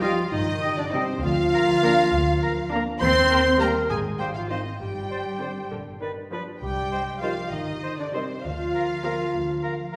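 Sneaky and mischievous, this whimsical, playful film cue moves at 66 BPM in a lilting 6/8 in C minor, a ten-second fragment cut from a longer piece. A lush symphonic violin section carries the melody with focused vibrato. A second violin section, a clear solo oboe, a mellow solo clarinet and a distant, pure flute group weave supporting lines around it, over a chamber viola section, very quiet vintage French horn chords and fingerpicked, ringing concert harp arpeggios in the background. A dark, expressive cello section with portamento and a chamber double bass section anchor the low end, and the whole ensemble sits in a recital-hall reverb that gives it a spacious, churchlike bloom.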